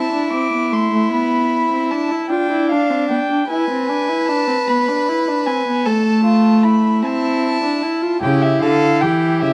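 Two violins and a viola open together in this solemn, driving baroque-style fugue for string quartet, a short portion cut from a longer work, set in 12/8 at 51 BPM counted in dotted quarters and tuned to A4 = 438 Hz. The melody sits high in the first violin, a dark, nasal, somewhat distant voice with a gut-string, period-style edge. Beneath it the second violin carries its own line up close, with an airy bow and a reedy tone, while the warm, up-front viola fills out the accompaniment in its middle register. The harmony moves from Am through Bm and E back to Am, and at 8.2 s a rich cello enters on the bass as the chord turns to A7/C#. A moderate large-studio reverb gives the bowed quartet a dark, warm sound.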